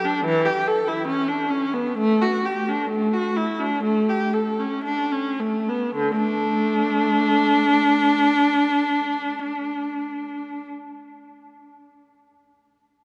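A single bowed viola opens this short classical passage, a baroque-style suite movement in D major played alone with a radiant, dance-like character. The tempo moves freely between 52 and 75 BPM in 4/4, easing back over the first 6.0 seconds before a new section begins. The viola sits up front, its clear, smooth, even tone carried by vibrato as it ranges from D3 to A4, with the instrument tuned to A4 = 436 Hz. The harmony passes through Em, D/A and A7 before settling on an open D5 chord at 6.0 seconds. A cathedral reverb with a five-second tail surrounds the player in a dark, wet space, and the fragment is cut from a longer piece, stopping at 10.7 seconds.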